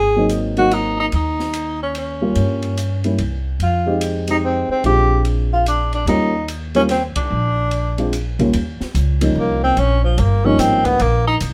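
A moderate studio reverb frames this sophisticated, playful clip of small-group swing and bop, cut from a longer piece in 3/4 at 146 BPM with a swung eighth-note feel in Eb mixolydian. A warm tenor saxophone with vibrato and a soft attack carries the melody up front, over a woody, plucked upright bass, a mellow baby grand piano whose short sustain and audible action noise lend it intimacy, and an acoustic drum kit heard in a small room, with dark cymbals, a high-tuned snare and a boomy kick. The band hits an accent at 7.1 seconds, and from 8.5 seconds the saxophone moves into a solo over an Eb7 chord.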